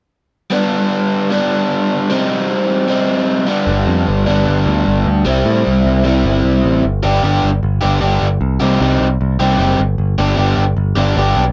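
Upbeat, carefree rock at 152 BPM in G major, cut from a longer piece, in which an overdriven, double-tracked, compressed electric guitar plays a bright picked riff up front from 0.5 s. A punchy, direct picked electric bass joins at 3.7 s and moves through chords of G, C minor and C, all in a dry, close 1970s-style studio sound with light reverb.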